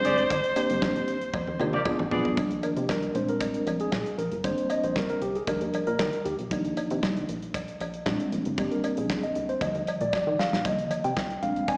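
A straight 116 BPM boogie-funk groove in 4/4 sets a slick, late-night mood, as an edgy alto saxophone and a distant, roomy horn section open briefly before the up-front, mellow tine electric piano takes a solo from 2.4 seconds over jazzy chords like Bb13, Ebmaj7 and Cm11, backed by a plucky, wave-folded analog bass, a punchy, airy studio drum kit with fills, and a dry, metallic cowbell, all heard through a venue PA with recital-hall reverb and small-speaker tone in this excerpt.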